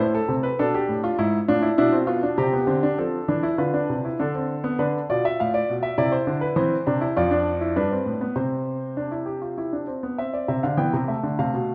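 This classical excerpt is a baroque-style three-part fugue for solo grand piano in a lively yet stately triple metre, its harmony moving from minor-tinged chords toward a settled major cadence. The concert grand sounds warm and natural, with a deep bass and an up-front presence, set in a moderate scoring-stage reverb, with nothing above 10.7 kHz. After a central passage, the opening material returns at 10.2 s before the excerpt ends at 11.7 s.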